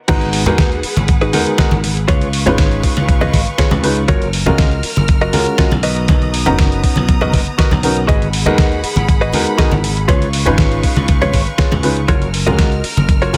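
Sleek and groovy, this nu-disco excerpt at 120 BPM in G# dorian rides a thumpy, gritty electronic kick up front, a fat-snared dusty sampler-style kit and ringing congas in the background under a punchy, growly slap bass, while a clean, direct-recorded electric guitar riff with subtle chorus, low-pass filter and dub echo sits alongside a short-sustain grand piano with dub echo and a distant, lush bowed string section, both pumping to the sidechain, over G#m7, C#7, F#maj7 and Bmaj7 in a small room.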